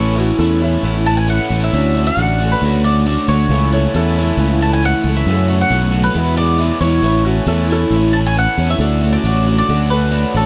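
A straight 4/4 pulse at 136 BPM drives this jangly, nostalgic folk rock and heartland rock cut in A major, taken from a longer piece and recorded in a dry, close 1970s-style studio. A round, punchy fingered electric bass sits up front, while a picked twelve-string acoustic guitar, boxy and shimmering with its octave-doubled strings and analog chorus, fills out the accompaniment. A bright bowl-back mandolin carries the melody on its double strings, and an overdriven, double-tracked electric guitar plays a compressed riff beneath it. A very quiet, reedy harmonium holds dark, breathing sustained chords, and a woody, slightly detuned upright piano adds brief second-line figures in the background at 0.2, 3.7 and 7.2 seconds. A jingly tambourine joins at 0.2 seconds as the chords move from Aadd9 through Dmaj7, F#m7 and Eadd9 before returning home.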